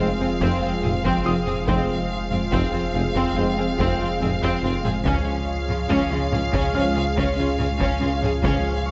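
At a straight 71 BPM in 4/4, this tense, relentless hybrid orchestral and electronic film-score excerpt moves from Fm to C#, with lush bowed violins carrying the melody over a background second violin line, distant violas with portamento, a hollow chorused pad, mellow French horns, a ringing harp-like synth pluck playing arpeggios, a very quiet tuba, a clean sine sub bass, rich double basses and cellos holding the low end, a vintage-toned grand piano adding texture, and heavy-stick taiko drums entering at 0.4 s, all set in a moderate scoring-stage reverb with a soft, rolled-off top.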